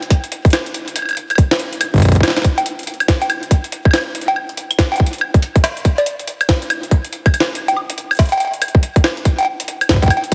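Intricate and glitchy, this short IDM fragment with a swung sixteenth-note feel pairs a gritty, pitched-up jungle sampler-style kit of cowbell, hi-hat, medium-tuned snare and woodblock, colored by tape echo, with a tight, overdriven electronic kick that enters at 0.1 seconds and was re-recorded in a small room, both sitting up front in a lightly reverberant mix squeezed into a heavily compressed, radio-like sound.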